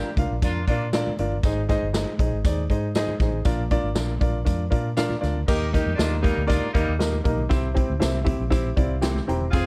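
Uptempo 1960s-style soul with a danceable, warm feel, cut from a longer piece, anchored by a warm concert grand piano with deep bass and short sustain sitting up front, over a round, foam-muted vintage electric bass and a swinging big-band drum kit with a punchy kick and medium-tuned snare. Very quiet, high-tuned congas add close, dry hand percussion, while a jingly tambourine sits in the background. A bright, tight horn section punches in briefly at the start and returns at 5.5 seconds, while the piano adds a fill at 8.5 seconds, all in a dark production with small room ambience.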